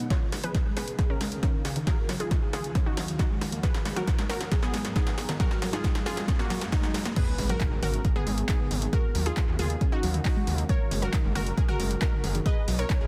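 Uplifting trance at 136 BPM in G# dorian, euphoric and driving, this cut opens with a build-up where a bright, detuned unison pluck melody rides a filter sweep over a shimmering, ethereal pad, a lush background pluck arpeggio with chorus and dub echo, a very quiet riser, and a drum fill from a punchy, tape-warm analog drum machine with handclaps, hats, snare, toms and crash over an up-front electronic kick. At 7.2 seconds the drop lands with an impact, and a mellow, vintage baby grand piano line enters with dub echo, joined at 7.4 seconds by a gritty, saturated sawtooth bass with sidechain pumping. Chords move from G#madd9 through D#m7 and F#add9 to Badd9, under light reverb and a dense, heavily limited master.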